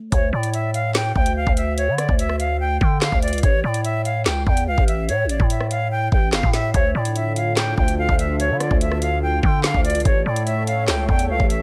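A half-time drill groove at 145 BPM in 4/4 drives this menacing, tense hip hop excerpt, with an electronic drum kit up front pairing a knocking kick and woody snare with metallic hi-hats, handclaps and rim clicks. Beneath it, a growling 808-style bass sits just as close, buzzy and saturated with a fast attack and a decaying tail, ranging from G1 to D3. A silver concert flute carries the melody between C#5 and G5 in D harmonic minor, its airy, soft-attack tone shaded with vibrato and trailed by an analog delay. At 7.1 seconds a dark analog pad enters with sustained chords, a deep, nasal, detuned sawtooth sound with a sub octave, slow attack and chorus, sitting lower in the mix. The harmony moves from D5 to A5, then Dm at 6.7 seconds and A, all within a dreamy mix soaked in a moderate plate reverb.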